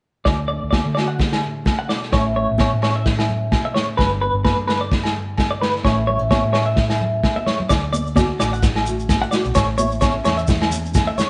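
Warm and carefree, this highlife guitar band excerpt moves at 129 BPM in a swung 4/4 in D major, with a clean, compressed electric guitar playing tremolo-tinged arpeggios up front over a woody, thumb-plucked nylon-string guitar and a round, punchy hollow-body bass. A muffled, lo-fi vintage drum kit with a tight kick and a rolled-off top sits forward, while ringing agogo bells sound in the live room and high-tuned congas struck with hard hands sit in the background. After a drum fill at 7.4 seconds, a grainy, close shekere joins at 7.7 seconds, all heard as a live band in a moderate stone room.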